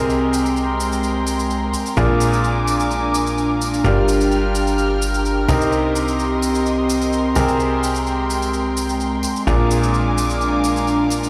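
Piano house at 128 BPM in Bb mixolydian, this euphoric, uplifting cut from a longer piece rides a straight 4/4 groove through a chord cycle of Abmaj9/C, Bb7, Gm7 and Cm7. Up front, a bright, brilliant grand piano with a worn edge and short sustain plays the riff, colored by tape echo. Beneath it, a punchy, funky analog bass with a fast attack and decaying filter pluck carries the low end, thickened by tube saturation. An airy, breathy pad with a slow attack and long release adds a detuned, chorused texture, while a warm symphonic violin section holds smooth, bowed sustained chords with light vibrato, softened by a low-pass filter. From 0.1 s, a layered electronic shaker and a close, dry tambourine sit in the background, and the whole mix sounds as if played on a big sound system in a bare stone room.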